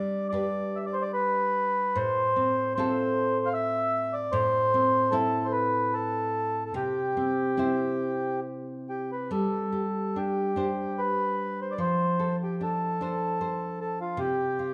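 Celtic folk slow air in a pastoral, tender 3/4 with a rubato feel, where a reedy, mellow accordion carries the melody up front across the whole 14.7 seconds over fingerpicked, full-bodied nylon-string guitar accompaniment, both set in a moderate recital hall reverb, and the passage shifts into a new section at 9.3 seconds as the chords move from G through Am and C to Gsus4 and F6 in a fragment cut from a longer piece.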